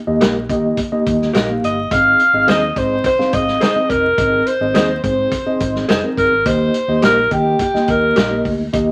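A vibrato-laden alto saxophone carries the melody from 1.6 s, sounding roomy and slightly distant yet up front, over a joyful, danceable 1960s-style soul groove at 106 BPM in Eb major. A mellow, clean tine electric piano, a dark, round, foam-muted fingered bass, slightly broken-up lo-fi guitar stabs and a punchy vintage drum kit with a rolled-off top and hi-hat, kick and snare drive a progression that moves from Eb to Ab at 1.9 s and back to Eb at 6.5 s. Wet studio reverb and vinyl crackle give this brief cut from a longer piece its old-record character.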